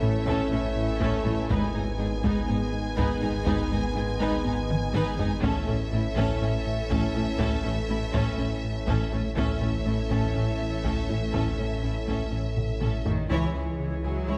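A straight 4/4 pulse at 122 BPM drives this tense, vast stretch of hybrid orchestral and electronic film score, cut from a longer piece, with a taiko ensemble struck with hard sticks sitting close and dry beneath the music from 0.3 s and breaking into fills near 4.7 s and 12.6 s. Down low, a swirling, thick phased saw bass carries the foundation alongside a very quiet chamber double bass section and a clear, intense cello section, while a smooth synth bass plays a mellow riff. Above them, a lush violin section sings the melody with smooth vibrato, shadowed in the background by a second, more distant violin line that slides with expressive portamento, and a rich viola section fills in the accompaniment. Dark, roomy French horns and vintage-toned trombones hold sustained chords, joined by an airy, breathy pad with a slow attack and long release. A woody, wave-folded pluck with a moving notch ripples through arpeggios as the harmony moves from A to G#m and back, arriving on C#m with a full-band accent at 13.3 s, all set in a moderate scoring-stage reverb.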